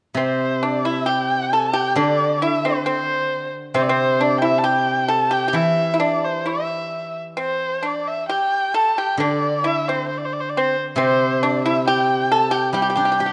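Heard in a moderate scoring-stage reverb, this graceful, pastoral excerpt of Chinese traditional chamber music unfolds in a rubato 2/4 at about 67 BPM in the G zhi mode, with a dark, bowed erhu carrying the melody up front with vibrato, portamento and a soft attack, a dry, percussive pipa playing a second line with fingerpicks, and a mellow, silvery steel-string zither, also close in the mix, ringing out its accompaniment from 0.1 seconds.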